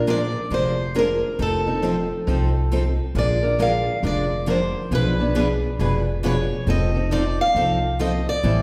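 A bright, boxy swing-style acoustic guitar carries the melody up front in this playful excerpt of jazz manouche, its fresh strings ringing out from the very first beat. Beneath it, a steel-string acoustic guitar with a parlour character provides accompaniment, while a second steel-string guitar with a concert tone sits in the background, joining at 0.1 s. An upright bass with gut strings gives a woody, dark, thumpy pizzicato foundation close to the listener. The tune swings at 136 BPM in 4/4, set in F mixolydian, and moves through Bb7, F7 and a Bdim7 before settling back on F7. The whole ensemble is bathed in the lush reverb of a recital hall, giving the performance the airy sense of a church or concert space.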